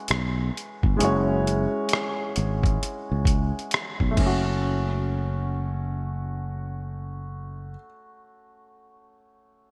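A warm grand piano opens this late-night, soulful R&B and neo-soul piece at a slow 66 BPM in F# minor, with a swung sixteenth-note feel, moving from F#9sus4 to F#m. A growly, punchy fretless electric bass and a gritty, compressed sampler-style drum kit, with a thumpy kick, hi-hat, rim click and crash cymbal, join the piano up front; the drums carry gated reverb and stop at 4.4 seconds. The bass drops out at 7.8 seconds, leaving the piano alone until 9.7 seconds, all within a lush hall reverb and bright 1980s-style digital production.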